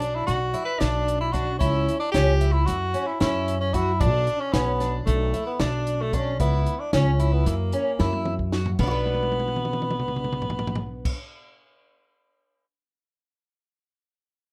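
Intricate and driving, this progressive instrumental band piece in 9/8 opens in B minor territory with a clear tenor saxophone carrying a jazz-style solo melody with light vibrato and scooped notes, over a shimmering, octave-doubled fingerpicked twelve-string acoustic guitar whose arpeggios carry finger squeak and plate reverb. A woody pizzicato upright bass with steel strings sits up front beneath them, while a dry compact cocktail drum kit with dark cymbals, a high-tuned snare and a punchy kick plays fills at 8.0 and 9.1 seconds, continuing alone until 12.6 seconds. The rough home demo mix sits in a small room, and this cut from a longer piece moves through Bm, C#dim, F#5, C#m7 and F#7.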